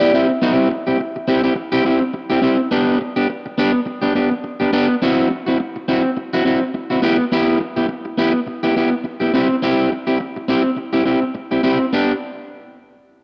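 Disco with a driving, glamorous mood, cut from a longer piece, where a mellow vibraphone with soft mallets rings briefly in the background with a melody until 1.3 seconds, while a twangy, slightly broken-up electric guitar sits up front with spring reverb, playing fingered accompaniment through 12.1 seconds over chords moving from C through G/B and Em/B to Bm, all in a dry, close 1970s-style studio sound with a small room ambience.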